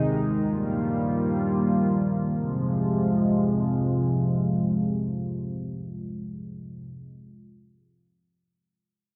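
A shimmering, chorused pulse-width synth pad opens this short pop excerpt alone, holding slow-blooming sustained chords with a retro, dark edge and a filter sweep across its first 2.4 seconds. The harmony moves from Ebadd9 at 0.5 seconds to F minor at 2.4 seconds, setting a melancholic, cool mood as the up-front pad evolves through its long release. A wet plate reverb soaks the mix in a dreamy haze, with the top end gently rolled off.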